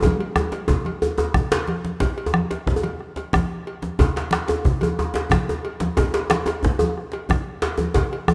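Earthy and powerful, this short cut from a longer West African traditional drum ensemble piece moves at 121 BPM in a straight 12/8, opening with a drum fill over the first 2.0 seconds where a short-ringing talking drum carries the melody on F3 until 1.7 seconds. A deep, dark, close and dry bombo and thick-skinned, low-tuned congas played with soft hands join a tight, cracking second djembe up front, while a metallic cowbell and a medium-tuned djembe with metal rattles sit in the background, all caught in light reverb and studio ambience on a rough home demo mix.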